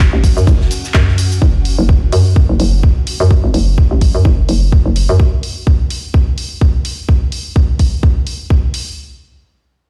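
A gritty, bouncy bass house excerpt opens on a hollow, knocking FM bass with a punchy, fast-attack bite, tube saturation and sidechain pumping, sitting up front beside a tight, tape-toned electronic kick. Layered big-room dance drums add handclaps, hi-hat and shaker, while a distant acoustic kit with ride cymbal and a medium-tuned snare is heard only until 1.3 seconds. Underneath, a dark, cloudy granular pad with built-in reverb fades out by 5.2 seconds, and the bass also drops out at that point. The whole piece rings through a big sound system in a bare stone room.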